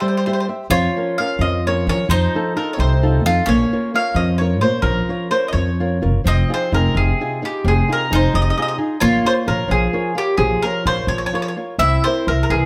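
A mellow, round mandolin carries the melody up front, its picked double strings set in a plate reverb over this wistful, romantic Italian serenade in 6/8 at 86 BPM, a short cut from a longer piece. Beneath it, a bright bowl-back mandolin picks a second line in a lower register, while a dark flamenco guitar fingerpicks the accompaniment across a broad range. An upright bass joins at 0.7 s, plucked pizzicato on steel strings with a woody, growly, thumpy tone that sits prominently in the mix. The music opens in Bb minor, moving through chords such as Bbm/F and F7, then shifts to F minor at 6.2 s for a second section that turns toward Fm7 and closes on C7. A moderate studio reverb gives the small acoustic ensemble a sense of intimate space.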